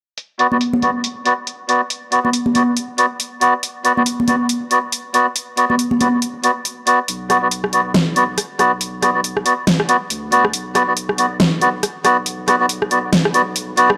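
Deep dubstep with a heavy, meditative half-time swing, this excerpt opens on a layered electronic kit of filtered bright hats, rim clicks and a huge, tape-warm snare, joined by reedy, nasal melodica stabs drenched in dub echo and up-front congas whose damped, high-tuned skins snap under hard hands until 6.1 seconds. At 7.1 seconds a build-up begins as a round, soft sub bass enters beneath, its deep triangle-and-square tone sustained under the breathy melodica. The whole recording carries a dry, gritty hardware character with light reverb and a touch of studio ambience.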